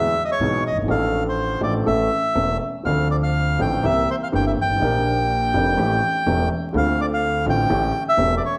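A reedy, smooth bandoneon carries the melody up front in this sultry, melancholic tango fragment cut from a longer piece, moving with a rubato feel over a woody upright piano and a dark, pizzicato upright bass with steel strings, set in a wet, large studio reverb beneath a layer of vinyl crackle.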